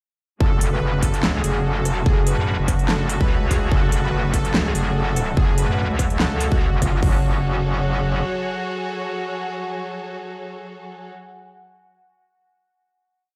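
A metallic wobble bass underpins this heavy, aggressive wobble dubstep piece, its saturated, bright tone thickened by chorus and overdrive as it plays modulated phrases with changing wobble speed from 0.4 until 8.2 seconds. At 145 BPM in a swung half-time 4/4 feel in F# minor, two layered electronic drum kits sit up front, one with a punchy kick and open hats, the other with a huge snare, crisp closed hats, rim clicks and handclaps, both dropping out around 7 seconds. A smooth, full-bodied supersaw repeats a riff melody through dub echo, while a clear studio string section holds bowed chords with vibrato, pumping under sidechain and softened by a low-pass filter. Deep in the background, a warbly, nostalgic tape-like pad drifts through slowly shifting chords, coloured by chorus, phaser and its own reverb. The drop on F# minor gives way at 7.0 seconds to a final F#madd9 chord, and the whole mix rings in a stone room as if played on a big sound system in a bare space.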